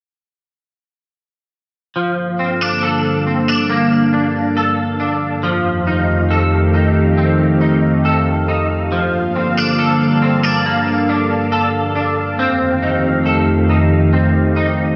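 An excerpt of hazy, haunting dream pop opens at 2.0 seconds with a twangy, slightly broken-up electric guitar playing fingered arpeggios up front, bathed in ensemble chorus and digital delay. At 2.4 seconds a bright, swirling sawtooth analog pad blooms in with a slow attack, holding sustained chords through phaser and chorus as the harmony sways between Gm9 and F7. A wet concert hall reverb and a soft-topped sound lend the whole passage a hazy, dreamlike glow.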